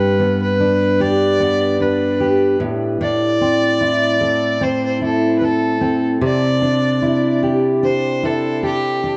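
Sunny and carefree, this acoustic pop excerpt moves in an easy 4/4 with a light swing on the sixteenths. A fingerpicked steel-string jumbo guitar carries the accompaniment, its fresh strings giving a full-bodied, warm tone that sits up front. Over it, a single bowed fiddle plays the melody with a smooth, even line and light vibrato. Both instruments play together from the start of the clip, each touched by analog delay, and the whole piece is set in light reverb with an echo-heavy mix. The harmony moves from G to Am at 2.6 seconds and settles on Cadd9 at 6.2 seconds, before this short cut from a longer piece ends.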